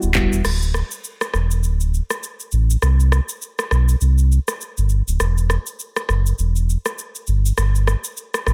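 Joyful and sunny, this short afrobeats excerpt moves at 101 BPM in 4/4 with a lightly swung sixteenth feel in D major, tuned slightly sharp of standard pitch. A deep, full sine sub bass with an added octave sits up front throughout, its fast attack and sustained notes ranging from D1 to C2, while an electronic, produced afro-pop drum kit pairs a deep kick with crash cymbal, handclaps, rim click and shaker. The dry mix keeps both parts close and present, with a break running from 0.4 seconds to the cut at 8.5 seconds.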